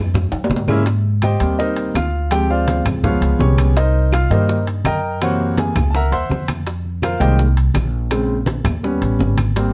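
A clear, intimate baby grand piano sits up front in this lively, sunny Afro-Cuban jazz excerpt at 166 BPM in Ab major, taking a solo from 0.9 s over chords such as Abmaj9, Db7#11 and Ebaug7, its action noise audible. Beneath it, a thumpy, up-front pizzicato upright bass with steel strings opens at 0.0 s, joined by low-tuned, thick-skinned congas in the background, tight, high-tuned bongos played with hard hands, and ringing metal-shell timbales, with a drum fill arriving at 0.3 s. Woody claves tick in the background, and light reverb lends a natural sense of space.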